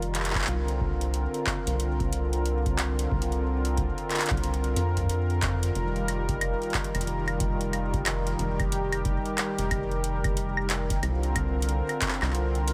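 A smooth, detuned sawtooth pad with chorus and tremolo, a rubbery, hollow square-wave bass with tube saturation, and a booming analog drum machine of claves, handclaps and metallic hi-hats open this glitchy, playful IDM excerpt at 91 BPM in 4/4 with a 62% swing on sixteenths, joined at 0.4 seconds by a deep electronic kick set in the background, as the pad's sustained chords move from C9sus4 to F9sus4 and back under light reverb, tuned to A4 = 443 Hz.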